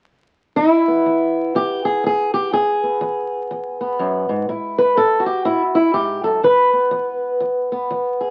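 Acoustic country blues with a soulful, laid-back mood, this short piece is cut from a longer performance and moves at 123 BPM in 4/4 with a swung eighth-note feel in E major. A single fingerpicked, ladder-braced acoustic guitar carries the whole piece, playing alone from 0.6 to 8.3 seconds across a span from E2 up to B4. Its tone is dark, woody and boxy, with the character of old strings, and it sits up front in the mix. The harmony rests on E before moving to A5 at 4.5 seconds and settling on E5 at 6.4 seconds. The sound carries the crackle and age of a very old 78 rpm record, with a moderate studio reverb giving the guitar a modest sense of room.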